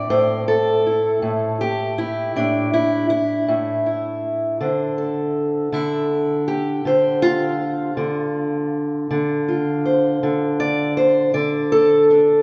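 In a slow, straight 12/8 lilt, this soulful, brooding fragment of acoustic country blues features a single fingerpicked steel-string parlour guitar, dark and boxy and placed up front, moving from Am7 to Dm9 at 4.6 seconds across its 12.4 seconds while a long, wet church reverb hangs around it in a resonant hall.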